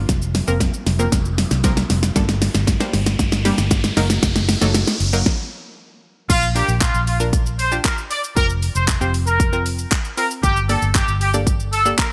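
Euphoric, carefree dance-pop at 116 BPM in Bb major, cut from a longer piece, where a round, chorused sawtooth analog pluck under a low-pass filter, a dark, foam-muted vintage electric bass with sidechain pumping, and a punchy pop drum kit with a fat snare, handclaps, shaker and gated reverb drive a build-up carrying a drum fill and an electronic riser from 1.2 s, then a brief stop gives way at 6.3 s to a drop where a clear, tight horn section with light vibrato and delay carries the melody, all in a bright 1980s-style digital production with light reverb.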